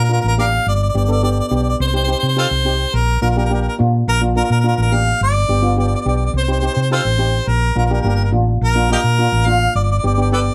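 A warm harmonica carries the melody up front in a jazz-style solo, with light vibrato and tongue slaps, its tone distant and roomy as it moves between Eb4 and F5. Beneath it, a hollow-body short-scale fingered electric bass sits equally forward, dark, round and amped, anchoring the harmony from G1 to C3 across the whole clip. Steel pan, played on cello pans with soft rubber sticks, enters at 0.1 seconds with a shimmering, metallic accompaniment that stays mellow, soft and vintage in its band-limited tone. This carefree, festive calypso moves at 106 BPM in a straight 4/4 in Bb major, cycling through Bb, G and Cm chords in a single section cut from a longer piece. Light reverb surrounds the trio.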